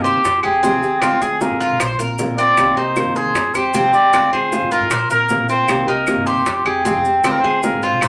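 A straight, danceable 4/4 Cuban son and guajira groove, cut from a longer piece, is carried by round, low-tuned bongos in the background, grainy maracas and very quiet woody claves beneath a breathy, whispered trumpet melody with vibrato up front, while a metallic, double-strung Cuban tres picks arpeggios alongside a dark, thumb-plucked flamenco guitar and a pizzicato upright bass, all set in a wet studio reverb as the chords cycle through Fmadd9, Dm7b5, Bbadd9 and Cm7.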